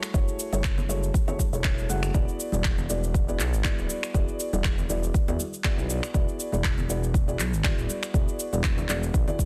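Afro house with a spiritual, earthy feel, this swung excerpt sets felt-muted upright piano stabs, soft and boxy with audible action noise, sidechain pumping and delay, over a smooth gliding synth bass with vibrato and portamento, a deep, up-front electronic kick, tape-toned electronic finger snaps, shaker and handclaps with soft clipping on the snare, and ringing, dry congas tucked in the background, all moving from F#m7 to E7 in a dense, heavily limited mix.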